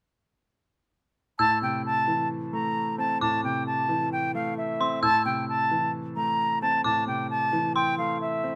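Hip hop in A phrygian at 132 BPM with a half-time feel, this hard-hitting, menacing excerpt sets a reedy, airy silver concert flute up front on the melody over an Am chord, joined by an eerie, inharmonic FM synth bell with chorus and tape echo as a second line, and grounded by a concert grand piano whose deep bass gives polished accompaniment, all three entering at 1.4 seconds in a rough home demo mix with light reverb.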